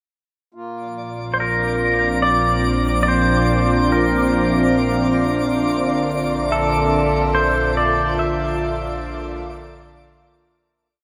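Ambient piece in a slow, peaceful 3/4, where a smooth analog pad with lush chorus holds slowly shifting chords up front, a deep rumbling drone sits beneath, a reedy pedal harmonium breathes in the background, a twinkling granular texture sparkles high above, a twangy pedal steel guitar carries arch-shaped phrases through diffuse ambient delay, muted felt-like synth keys scatter very quiet arpeggios, and all of it sits in a shimmering reverb before fading out from 7.3 seconds.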